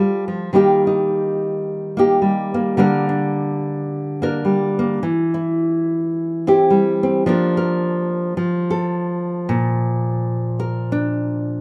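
A lightly swung 4/4 at 107 BPM carries this hopeful, gentle folk fragment in Bb major, cut from a longer piece, where a solo nylon-string guitar, fingerpicked in a warm classical style and placed up front in a moderate studio room, moves through F, Eb, Gm/D, C/E, Bb/F and back to F before resting on Bb at 9.5 seconds.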